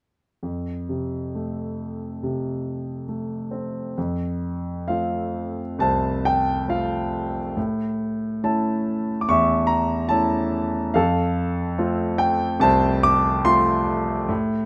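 Light reverb surrounds a natural, up-front concert grand piano with a deep bass as it plays a tender, calm, lyrical classical passage alone in flexible rubato from 0.4 to 14.7 seconds, cut from a longer piece.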